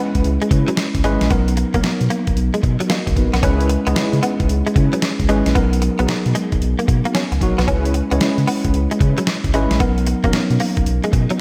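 A worn, slightly out-of-tune tine electric piano and a clean, picked electric guitar recorded direct open this bouncy, confident new jack swing groove at 113 BPM, the guitar's compressed riff thickened by an ensemble chorus. Within a fraction of a second a gritty, tape-warm sampler-style drum kit lands up front with a thumpy kick, medium-tuned snare and hi-hat, swung on the sixteenths. A deep, round analog bass joins at 0.2 seconds with dark, sustained notes, while mellow synth brass sits in the background, dropping detuned, full-bodied stabs coloured by chorus, vibrato, a filter sweep and digital delay. The harmony in C# dorian alternates between C#m7 and Bmaj7 throughout, giving the passage a smooth, circling pull. A lush hall reverb and bright 1980s-style digital production frame this short cut from a longer piece, which runs to 11.4 seconds.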